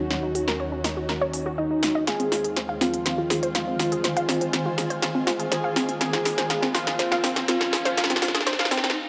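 Dark and hypnotic, this short cut from a longer melodic techno piece runs at 122 BPM in a straight 4/4 and sits entirely in a build-up, with a drum fill and filter sweeps running through it. A fat, nasal analog lead carries the melody between Eb4 and Ab4, its detuned sawtooth and sub octave colored by ring modulation, vibrato, subtle chorus and digital delay while a filter sweeps across it. Alongside it, a punchy, warbling unison pluck spins arpeggios through tape echo, also under a sweeping filter, as a woody, bowed string section holds sustained chords and a cloudy, evolving granular pad drifts behind. The layered techno drum kit stands up front with a punchy snare and smooth hats, while a very quiet electronic riser enters at 5.1 seconds to push the tension higher. The harmony moves from Ebm7 to Fm/Eb at 2.1 seconds, all wrapped in a lush hall reverb that gives the mix a spacious, shadowy depth.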